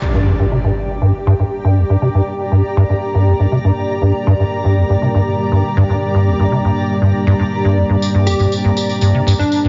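A squelchy, resonant square-wave acid bass sits up front in this driving, gritty acid house clip, playing a riff in a low register from 0.1 seconds with a subtle chorus, tape echo and a filter sweep running throughout. An electronic impact opens the piece over the first 2.0 seconds. Above the bass, a dark, detuned analog pad holds sustained chords with chorus and its own filter sweep, while a cloudy granular pad adds a blurred, evolving texture higher up, bathed in its built-in reverb. Near the end, a jingly tambourine enters at 8.0 seconds, and a punchy, catchy unison lead arrives at 8.3 seconds with a short melody carried on tape echo. The whole mix sits in a lush hall ambience but is heavily compressed into a dulled, radio-like sound, and the clip is cut from a longer piece.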